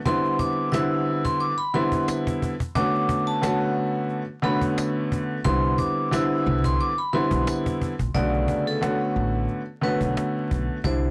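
A blown-out, overdriven recording with vinyl crackle and light reverb carries this reflective, moody boom-bap hip-hop excerpt at 89 BPM in B phrygian, swinging gently as it moves between Cmaj9 and Bm9. An up-front, intimate upright piano with audible action noise lays down smooth, vintage chords beneath a bright, ringing vibraphone melody struck with hard mallets, while a snappy, close and dry cajon keeps time and a jingly tambourine sits in the background until 7.6 seconds. After a break, a dark, thumpy pizzicato upright bass on gut strings enters at 5.5 seconds, its woody tone thickened by transformer saturation.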